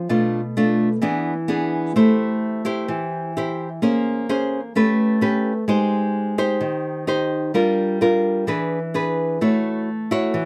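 A small, up-front nylon-string guitar sits in a moderate studio room with a short, natural ambience, the occasional finger squeak audible. This sunny, romantic bossa nova passage, cut from a longer piece, is a fingerpicked solo guitar moving through lush jazz chords such as Bm7b5, E7, Bbm9 and Abmaj7. The phrase turns toward a new section at 9.4 seconds, settling on an A6 chord.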